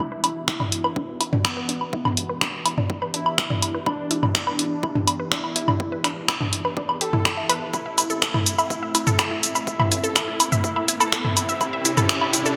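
Bright, 1980s-style digital production bathed in a wet plate reverb gives this melodic techno passage, cut from a longer piece, a glossy and spacious sheen. At 124 BPM in a straight 4/4 in E minor, it feels driving and hypnotic, building throughout as filter sweeps open up both the lush, warbling unison pluck arpeggios and the smooth, vintage analog pad sustaining chords in the background. A bold, fat analog synth brass carries the melody with a dark, brassy edge, vibrato, chorus and delay, while the pluck adds its own delay and both pump against the sidechain along with the pad. Up front, a punchy analog drum machine, re-recorded in a small room and treated with gated reverb, clicks through finger snaps, hi-hat, shaker, toms and woodblock, joined by a layered, overdriven electronic kick that is high-pass filtered. Underneath, a menacing, detuned saw bass evolves with a saturated filter swell, very quiet in the mix. 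The harmony moves from Em7 to Am at 7.7 seconds and Cadd9 at 11.6 seconds, as a riser enters in the background at 9.7 seconds to heighten the build.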